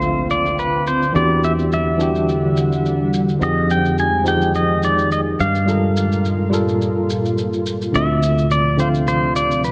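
A clean, fingerpicked pedal steel guitar with slide and volume swells carries the wistful melody up front in this 106 BPM sunset chillout excerpt, over a worn, slightly out-of-tune tine electric piano, an ethereal detuned pad in the background, a growly fretless bass with lush chorus, a layered electronic shaker and a very quiet impact in the first 1.2 seconds, all moving through Dm9, Em9, Fm9 and Gm9 in a lush hall reverb.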